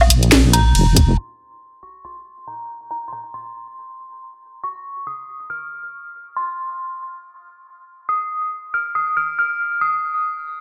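This heavy, meditative deep dubstep excerpt opens on a drop at 139 BPM in a swung half-time feel: an eerie, inharmonic FM synth bell carries the melody with chorus and dub echo, over a deep, wobbling sawtooth-and-sine bass and an overdriven garage kit of hi-hat, ride, woodblock and a cracking snare, with a tight electronic kick landing at 1.0 seconds. The bass and drums fall away by 1.2 seconds, leaving the up-front, decaying bell tones alone under a filter sweep until 10.4 seconds. A light reverb and a low-pass filter give the whole passage a dark, muffled haze.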